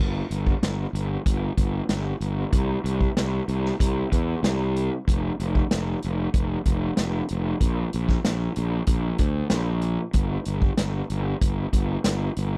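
Classic rock at 94 BPM in a straight 4/4, sunny and confident, built on a growly, overdriven fuzz bass that sits up front from 0.0 seconds alongside a vintage drum kit entering at 0.3 seconds with a punchy kick, medium-tuned snare, hi-hat and a rolled-off top, all captured in a dry, close 1970s-style studio sound cut from a longer piece.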